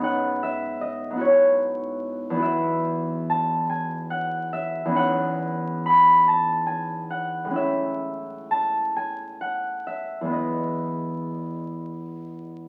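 Flowing in 6/8 with a free, rubato sway, this classical passage for solo concert harp is a short cut from a longer piece and carries a peaceful, serene mood. The harp is the only voice, sitting up front in the sound, its thumb-plucked strings ringing across a span from E2 up to B5. Open harmonies drift from Badd9 over G# through Eadd9 to an Amaj7, arriving at an Emaj7 at 10.3 seconds. A moderate studio reverb lends the tone a rounded glow. The whole performance comes through the patina of a very old 78 rpm record, with vinyl crackle hovering beneath the harp's calm, acoustic resonance.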